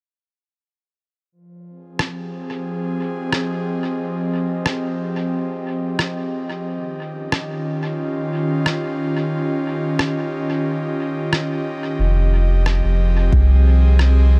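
A breathy, chorus-treated pad opens this hazy, deep ambient dub fragment with sustained Fm9 and Eb9 chords, joined at 2.0 s by a muffled, pitched-down rim click trailing dub echo; a round, tube-saturated sub bass enters up front at 12.0 s, and an overdriven kick sits in the background briefly at 13.3 s, all in a fairly dry space.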